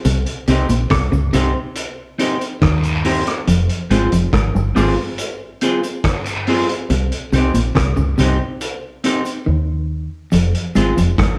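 A dark, slightly broken-up electric guitar riff with tremolo opens this laid-back, meditative roots reggae excerpt alongside a gritty, punchy vintage kit of hi-hat, kick and rim click and a distant cabasa and guiro in the background, soon joined by a round, foam-muted dub bass up front and a clean, picked semi-hollow guitar. The chords move between Cm and Fm, the drums briefly mute from 9.5 to 10.3 seconds, and the whole band plays live in one room through a moderate large studio reverb onto cassette tape.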